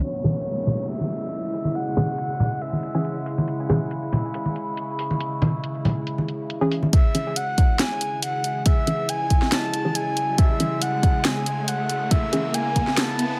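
A deep, tape-warm electronic kick arrives at 6.9 s in this cavernous, heavy deep dubstep excerpt in C# minor at a half-time 139 BPM, taking over from the damped, low-tuned congas alongside an overdriven garage kit with a cracking snare and filtered hats, while a muted sawtooth dub chord stab sweeps through its filter with chorus and dub echo, a wave-folded drone with moving overtones sustains C# minor, a breathy flute-like synth lead with vibrato sings above, and a background downlifter and riser, rising from 9.0 s, drive the build-up in a moderate digital room.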